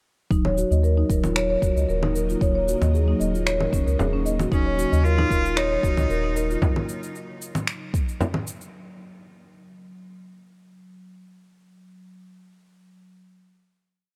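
A bright, biting bowed cello enters at 4.5 s with vibrato-laden call phrases over a hypnotic organic downtempo groove of woody soft-mallet marimba arpeggios through a low-pass filter and delay, a round analog bass with sidechain pumping, a deep electronic kick, an overdriven, layered beat of electronic cabasa, congas and finger snaps, an up-front frame drum arriving at 4.0 s, an ethereal, airy pad with chorus and phaser in the background, and a faint ringing bronze singing bowl, set in a dark mix with light reverb.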